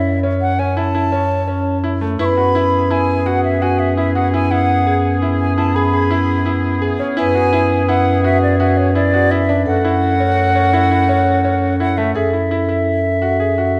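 A close, airy wooden flute carries the melody from the start, over a ringing vibraphone second line, brilliant piano arpeggios with long sustain and a dark, smooth bass clarinet up front on a single low note, in this hypnotic, restless chamber piece in 7/4. At 2.2 seconds a distant woodwind section enters with sustained chords and light vibrato, holding until 12.1 seconds before the harmony settles onto a richer minor chord. The moderate concert hall reverb lends the dark, warm production a roomy depth in this short cut from a longer work.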